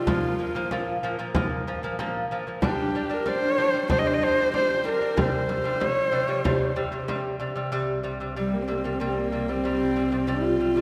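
Set in a straight 4/4 at 94 BPM, this short fragment of Mongolian folk music feels vast and solemn, its chords moving from Bb5 to G5 to C5. A husky horsehead fiddle carries the melody up front, its airy bow, light vibrato and gliding portamento colored by a tape echo. Beneath it, a fingerpicked lute with gut double strings spins delicate arpeggios. A deep frame drum, close and dry under hard hands, keeps time until 7.5 s. At 7.7 s, a bowed double bass slips in with a woody, vibrato-touched drone on C2. A lush concert hall reverb places the whole ensemble further back in the room, lending it a dark, spacious air.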